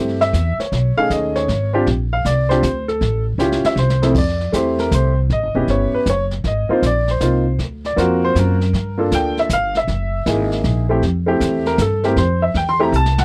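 Jazz piano trio excerpt swinging in 3/4 at 157 BPM, where a woody upright piano, up front with long sustain, takes a solo from 4.1 s as the harmony settles into F major, over a thumpy pizzicato upright bass on gut strings and a brushed drum kit with dark cymbals and a boomy kick that adds fills at 3.4 s and 12.9 s, all in a dry, close 1970s-style studio sound with light reverb.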